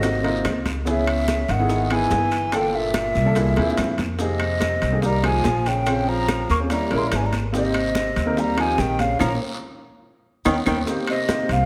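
Afro-Cuban jazz at 144 BPM in Ab major, sophisticated and danceable, with a breathy, distant metal flute carrying the melody over a growling, gritty tenor saxophone second line, warm baby grand piano accompaniment and an up-front, woody pizzicato upright bass, while very quiet high-tuned congas and bongos, ringing timbales, background claves, raspy guiro and grainy maracas fill out the percussion in a large studio reverb, with drum fills at 3.6 and 10.2 seconds and a band accent starting at 9.2 seconds.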